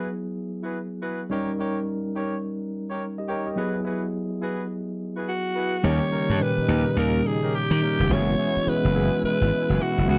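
A dry, close recording in a 1970s studio manner, with little reverb, frames this punchy, bouncy R&B excerpt at 106 BPM, its sixteenth notes swung. A tine electric piano, clean and up front, lays down chords from the start, moving between F#9sus4 and D#7, while a loose, jazz-style horn section adds smooth-topped stabs with light vibrato and a slapback echo. At 5.3 seconds a breathy alto saxophone takes the melody, raspy and bright with scooped notes and its own slapback echo, sitting forward in the mix. From 5.8 seconds an overdriven slap bass enters, gritty and amped, the loudest part, and a very quiet sawtooth pad, detuned and chorused, adds mellow sustained chords in the background. The excerpt ends at 10.2 seconds, cut from a longer piece.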